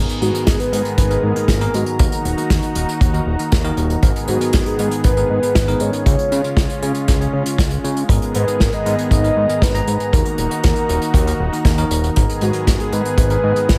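A round, dark octave-layered synth lead with chorus, phaser, delay and vibrato carries the melody through this danceable, bittersweet italo disco excerpt at 118 BPM in G# dorian, over a fat, nasal, tube-saturated analog bass, a smooth, warbling vintage pad holding sustained chords, bell-like tine electric piano stabs in the background, and a punchy acoustic kick with hi-hat and medium-tuned snare played with bundle sticks, as the harmony moves between G#madd9, D#m and C# in a lightly reverberant studio room.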